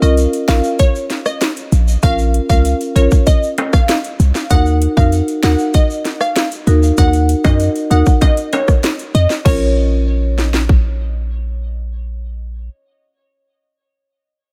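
Dancehall in Bb minor at 97 BPM, this bouncy, sultry piece is cut from a longer track and opens on a brief break before a tight electronic island pop kit, with sharp snare, metallic hats, rim clicks and crashes, arrives at 0.2 seconds. A deep, boomy 808-style bass sits up front beside the kit, while a woody rosewood marimba pumps against the sidechain and a bright, vintage tube shaker and timbales add hard-handed acoustic color until 9.7 seconds. Over a Bb minor to Eb minor progression, a glassy, crystalline wavetable pluck with chorus, delay and a filter sweep carries the melody into a short second section at 9.5 seconds, all in a dry, close sound.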